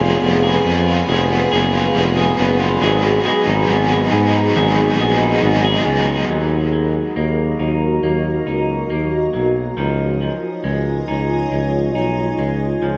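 Dream pop at 69 BPM in Eb minor, hazy and haunting, this fragment of a longer piece floats on a dark, blurred granular cloud pad of evolving, detuned sustained chords, while an up-front tuba carries the bass with light vibrato, scooped notes and a smooth top. A bright, twangy electric guitar through a small old amp picks slightly broken-up, lo-fi arpeggios with subtle chorus and tape echo. A double-tracked, overdriven guitar adds shadowy picked accompaniment through tremolo, analog chorus and tape echo before dropping out at 6.3 s, all within an echo-heavy mix bathed in moderate spring reverb.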